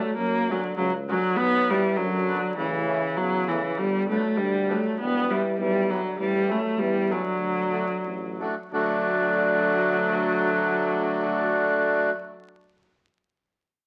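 Festive, jolly alpine folk for an alpine dance band in D major, swinging in 2/4 at 84-102 BPM with a rubato feel that slows between 6.2 and 8.7 seconds, as a rich, smoothly bowed viola with light vibrato carries the melody up front beside a reedy accordion accompaniment, while a warm, distant euphonium plays a second line and a mellow, soft-edged tuba holds the bass in the background, all heard through a wet studio reverb and the crackle of a very old 78 rpm record in this clip cut from a longer piece.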